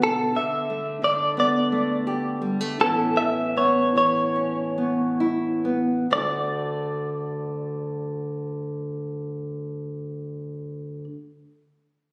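Heartfelt and nostalgic, this short excerpt from a longer acoustic folk-pop ballad moves in a straight 4/4 feel and gradually slows over its first 6.1 seconds. A clean electric guitar, recorded direct and compressed, carries the melody up front with a picked, tremolo-tinged tone in a fairly high register. Beneath it, a nylon-string guitar with fresh strings provides fingerpicked classical accompaniment, its warm voice spanning from deep bass notes to the middle range. The harmony shifts from Gadd9/B to Aadd9 before settling on D as the second section begins at 6.1 seconds. Captured on a phone in the room, the sound carries a wet, hall-like reverb that lends the intimate performance a lingering, spacious glow.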